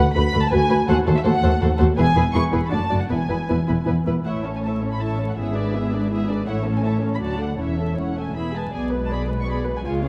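A dark, vinyl-crackled production set in the wet bloom of a scoring stage carries this brief, graceful and spirited cut from a quick classical-period movement for string orchestra in A major, moving at 162 BPM in a straight 3/4. Muted violin sections carry a veiled, con sordino melody and a second line above a soft-attack viola accompaniment, while muted cellos and double basses supply a bowed, vibrato-tinged bass. The opening phrase moves through diminished colour to rest on E before the second section starting at 4.3 seconds settles onto A and closes on a G#dim/B chord.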